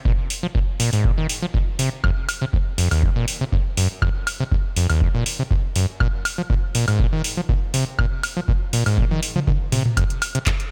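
An overdriven acid bass leads this raw, hypnotic acid house cut from a longer piece, its squelchy, resonant sawtooth riff sitting up front from 0.1 s with a fast attack, a decaying tail and a filter sweep, pushed through tube saturation, cassette tape coloring and a digital delay. Beneath it, a deep, tape-warm electronic kick drum drives a straight pulse. A booming analog drum machine adds handclaps, metallic hats, toms and woodblock, and both drum parts sound re-recorded in a large room while staying close and forward in the mix. A drum fill arrives at 9.0 s, and at 10.0 s a very quiet, gritty, compressed, sampler-style soul kit slips in with hi-hat and a medium-tuned snare. A digital ambience surrounds the whole mix.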